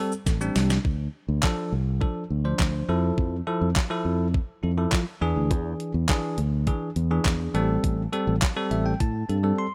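A straight dance-pop groove from a clean 12-bit drum machine, with thumpy kick, fat snare, handclaps, hi-hat and shaker, plays a short fill at 0.3 seconds in this carefree, summery cut from a longer piece. Up front, a fingered electric bass with a warm, amped tone and a bright, bell-like tine electric piano both pump against the sidechain as the chords move from Am7 through Dm, Fmaj7 and E7 back to Am7. The electric piano takes a fill at 8.4 seconds before a break at 9.6, all set in digital ambience with the feel of a rough home demo mix.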